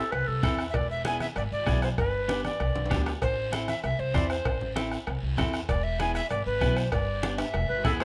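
An up-front alto recorder carries the melody in this fiery, danceable cumbia excerpt. Entering at 0.7 seconds, it has an airy, woody, straight tone with a crisp, chiffy attack. A breathy clarinet with light vibrato and a clear, jazz-style voice opens the passage and comes back briefly at 7.7 seconds as a second line. Underneath, a dark, clean, picked electric guitar keeps up the accompaniment, while a woody pizzicato upright bass sits prominently at the bottom. The percussion is driven by a vintage, band-limited bombo with a soft beater, alongside low-tuned, hard-handed congas and ringing metal-shell cowbell and timbales set dry in the background, plus a raspy guiro heard at a distance in a large room. The harmony moves through Am, E7 and G, drum fills mark the phrases starting around 2.8 seconds, and light reverb adds a touch of space to this fragment cut from a longer piece.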